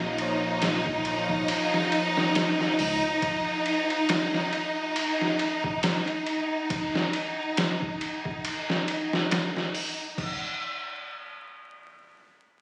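A bright, lush string section leads this hypnotic, cinematic trip hop excerpt, holding sustained bowed chords with intense vibrato up front until 10.2 seconds. Beneath it, a sampler-style drum kit, pitched down, gritty and tape-toned, plays at 69 BPM with a 16th-note swing, its thumpy kick, medium-tuned snare, hi-hat, ride and crash sounding compressed and re-recorded in a small room. A deep, round dub bass, fingered and punchy, sits low in the opening moments and stops at 3.0 seconds. In the background, a reversed, granular texture with a soft attack and long release drifts dreamily over the same stretch, carrying its own reverb. The whole mix has a phone-in-the-room quality, with studio reverb, vinyl crackle and compression lending it a light, digital ambience.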